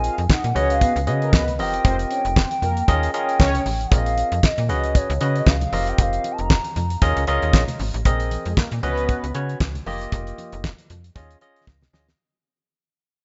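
Early-eighties boogie funk in Bb minor at 116 BPM, danceable and funky with a swung sixteenth feel over suspended ninth chords, cut from a longer piece. A smooth, gliding portamento lead with chorus and vibrato carries the melody until 7.2 seconds, and a round, detuned synth brass with a filter sweep plays a second line. Beneath them, a barky, lightly overdriven tine electric piano plays the accompaniment over a snappy FM bass with a metallic attack. A dry, up-front 70s drum kit with a fat snare, tight kick, hi-hat and handclaps drives the groove, very quiet soft-handed congas sit underneath, and the rough home-demo mix with small-room ambience fades out from 8.1 seconds toward a closing drum fill.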